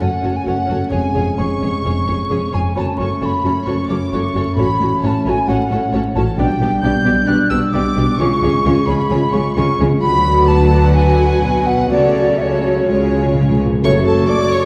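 An airy, wooden flute line rides over this quick, lively and graceful classical-period orchestral movement in F# minor at 131 BPM, with a rich, vibrato-laden violin melody, an intense second violin part, a bowed viola accompaniment in the background, mellow sustained French horn chords and a smooth, even cello and double bass foundation. Soft-mallet timpani enter at 11.9 seconds and play a fill from 12.9 seconds, and a dark bassoon, a very quiet clarinet, an oboe and a distant trumpet stab arrive briefly at 13.8 seconds, the whole heard from further back in a reverberant scoring stage with vinyl crackle.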